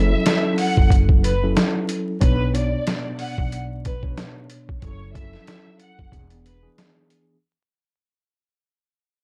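A distant, lush bowed violin section with expressive vibrato carries the melody over a mellow tine electric piano with cassette tape coloring and a woody, growly pizzicato upright bass with tube saturation, before a compressed, pitched-down sampler-style drum kit with a thumpy kick and medium-tuned snare enters up front at 0.3 seconds. This dark, gritty boom-bap hip-hop piece moves at 92 BPM in B dorian with a 55% swing on the 16ths, cycling through F#m7, Bmadd9 and E7. The dry hardware recording, flecked with vinyl crackle, fades out across its full 7.4 seconds, as if cut from a longer piece.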